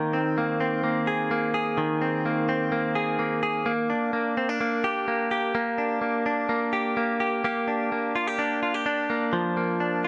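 A clean electric guitar, recorded direct and sitting up front, carries this short indie pop excerpt entirely alone, its picked tone twangy and scooped with a compressed, even sheen. The mood is bright and breezy, with a straight feel in 4/4. The guitar moves between Abadd9 and Bb6 chords, ranging from Eb3 up to Ab4, before landing on a Bb chord at 9.3 seconds. A light reverb gives the dry, direct signal a touch of space. The passage falls into two sections, with the second beginning at 7.4 seconds, and the guitar plays on until 10.1 seconds, as though lifted from a longer piece.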